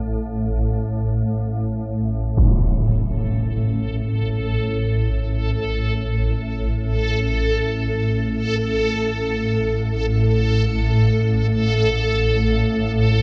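Unfolding in free time, this unsettling, ominous dark ambient fragment opens on a swarming, detuned drone, a tense, granular sine sound held up front in the low register that seems to evolve as it sustains. At 2.4 s a huge, dark impact lands, muffled by a low-pass filter, and a reversed, dreamy texture of bright triangle tones enters high above, drenched in shimmer reverb and staying until the end at 13.2 s. The whole piece sits in a wet cathedral space with a 5.2-second reverb tail, and its sound is dulled of extreme highs.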